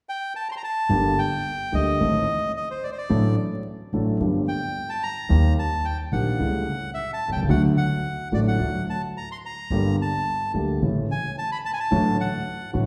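Rubato in 4/4 at 109 BPM, this tense, dramatic tango fragment in G minor opens with a reedy, bright, airy bandoneon carrying the melody up front from 0.1 s, joined at 0.9 s by an intimate, smooth, vintage concert grand piano with deep bass and audible action noise and a woody, thumpy pizzicato upright bass on steel strings, all set in the wet reverb of a church or concert hall beneath a layer of vinyl crackle.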